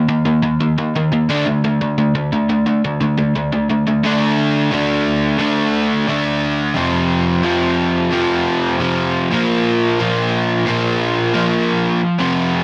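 A dense, heavily limited modern master with light reverb frames this rebellious, rowdy punk fragment at 176 BPM in a straight 4/4. A lone overdriven semi-hollow electric guitar, picked and double-tracked with a warm, up-front hollow-body tone, carries the whole 12.6 seconds, moving through power chords on Eb5 and D5 before a new section at 4.0 seconds brings F5 and then Bb5. Cut from a longer piece, it sits between F2 and D4.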